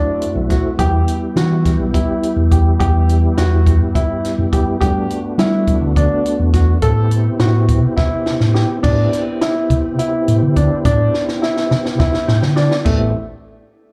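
Heard live through a club's PA system, the recording carries light club reverb, giving this short cut from a longer progressive instrumental a sense of the room. The band drives along in 7/8 at 209 BPM, counted in eighths, with a straight feel in A dorian and tuning set to A4 = 437 Hz, and the mood is intricate and driving. A soft, flute-like tonewheel organ supplies accompaniment through chorus vibrato, a slow rotary speaker and slapback echo, while a natural-toned grand piano plays arpeggios with its own slapback echo. Up front, a compact cocktail drum kit sounds dry and acoustic, with dark cymbals, a high-tuned snare and a punchy kick, and the round, amped hollow-body short-scale electric bass is the loudest part in the mix. The harmony moves from D7 to Em, then to Gmaj7 and Am7. The drums fill at 8.0 seconds and again near the close, where the organ adds a fill of its own at 12.0 seconds.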